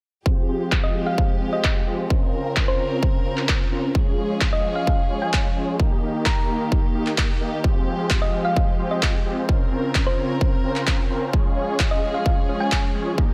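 A punchy, up-front kick, huge detuned supersaw chords and a dark, intimate bowed string ensemble all start at 0.3 s in this powerful, euphoric festival progressive house excerpt at 130 BPM in F minor, the supersaws bright and lush with phaser, low-pass filter and delay, and both they and the softly sustained strings pumping against the kick. Layered electronic handclaps join, and a round, tine-like thumb-piano-style FM pluck with chorus, delay and gritty 12-bit sampler texture carries a gentle melody from 0.8 s. The chords cycle through Fmadd9, Bbmadd9, Db and Eb in a dry, close-sounding mix.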